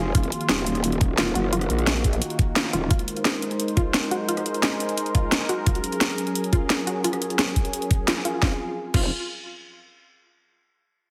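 Dark technical drum and bass at 174 BPM, aggressive and mechanical, where an up-front knocking electronic kick and an overdriven kit with cracking snare, bright hats, rim clicks and crashes drive under a growling, wobbling formant-filtered bass with overdrive and chorus that drops out at 2.9 seconds and returns at 8.4, while a detuned sawtooth pad with a slow attack, a filter swell and chorus sustains Ebmadd9, Abadd9 and Gb chords and a lush, punchy unison pluck in the background spins tape-echoed arpeggios, with bass, pad and pluck all pumping against the kick in a lush hall and a heavily compressed, radio-like mix.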